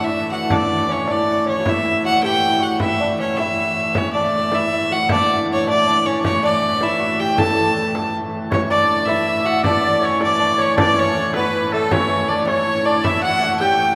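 A bright, nasal fiddle leads this festive, ancient-sounding medieval dance in A mixolydian, its single bowed line up front over a mellow, fingerpicked gut-string lute and the rich, smooth drone of a wheel-bowed hurdy-gurdy, with a frame drum struck by hard hands entering at 0.5 seconds. The straight 6/8 moves at 105 BPM and speeds up throughout, and at 8.5 seconds an edgy, punchy shawm joins as a second line, its scooped notes and vibrato adding a folk bite. A wet cathedral reverb with a long 5.0-second tail gives this brief cut from a longer piece a spacious, resonant setting.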